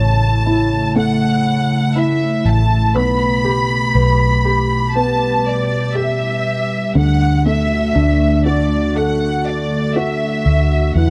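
A lush, bowed violin section carries the hopeful, tender melody up front in this short pop excerpt, over a felt-muted upright piano, a glassy FM pad with ensemble chorus and reverb, and a round, foam-muted electric bass, all set in a small, dark-sounding room as the chords move from A to Gadd9/B at 3.0 seconds and D at 7.0 seconds.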